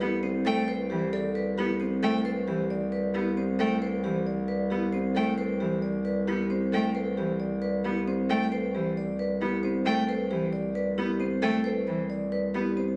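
A metallic, ringing vibraphone with slow motor vibrato carries the melody up front in this hypnotic, propulsive excerpt of minimalist classical pattern music in 7/8 at 268 BPM in eighths, set over a Cmaj7 chord in C major, with woody, round marimba and a smooth-topped bowed violin spinning arpeggios, a rich bowed cello holding the accompaniment, and a roomy, distant-sounding bass clarinet anchoring a low C, all captured on a phone in a reverberant room with a club-like ambience.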